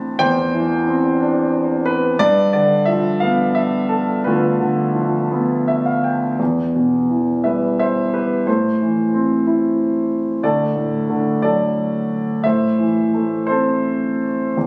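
Reflective and dark, this brief classical excerpt for solo concert grand piano moves in a flexible, rubato 6/8 and spans the keyboard from D2 up to B5, its natural, up-front tone rooted in a deep bass. The harmony drifts from Am7 to G7, and a brief piano fill at 5.3 seconds leads into a new passage at 6.4 seconds that moves through Em, Am and D before returning to Am. Tuned to A4 = 444 Hz and captured on a phone in the room, the sound carries a light club reverb and compression.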